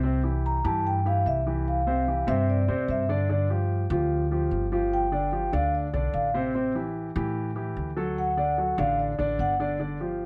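A dark, mellow concert grand piano and a woody, pizzicato upright bass open this short fragment of sophisticated, sunny Afro-Cuban jazz, both sitting up front in a straight 4/4 feel. At 0.5 seconds a soft-malleted vibraphone enters with the melody, its ringing, smooth tone heard with the motor off. The vibraphone carries a solo across the passage, staying in a high register until it drops out at 9.5 seconds. Beneath it, the piano's deep bass and natural character support the harmony as it moves from C through G7 and Am7 to D. The bass has a growly, thumpy steel-string bite, and a moderate club reverb gives the whole passage a club-like room sound.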